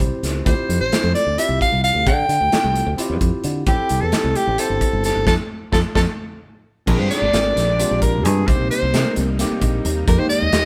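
A breathy, whispered soprano saxophone carries the melody and takes a solo from 6.9 seconds in this intense, funky electric jazz fusion excerpt in 7/8, backed by a growly fingered electric bass, a punchy acoustic drum kit with a pumping room sound, a barky tine electric piano that adds a brief fill, and a vintage sawtooth string machine of violas with ensemble chorus entering in the background at 6.9 seconds, all in a stone room.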